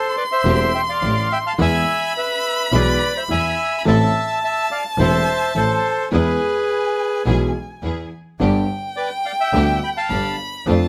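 A rubato 4/4 tango at 106 BPM in A minor, sultry and passionate, cut from a longer piece. A reedy, up-front bandoneon with a boxy small-room character carries the melody alongside a close, expressive bowed violin whose second line is rich with vibrato and portamento, while a concert grand piano with deep bass and short sustain accompanies from 0.4 s. A clear, intense bowed double bass with a smooth top anchors the low end, and a bright, biting symphonic string section adds lush stabs in the background, set in light reverb over chords moving from Am7 through E and Am to G.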